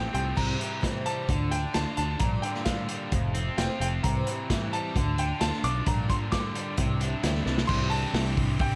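Wistful and reflective, this folk rock and heartland rock excerpt sets a brilliant concert grand piano melody with plate reverb over a shimmering, octave-doubled twelve-string acoustic guitar, a double-tracked, overdriven stack guitar riff, an up-front fretless electric bass with ensemble chorus and a muffled, lo-fi vintage drum kit that plays a fill at 7.5 seconds, while a very quiet, smooth bowed string section holds sustained chords from 0.4 seconds.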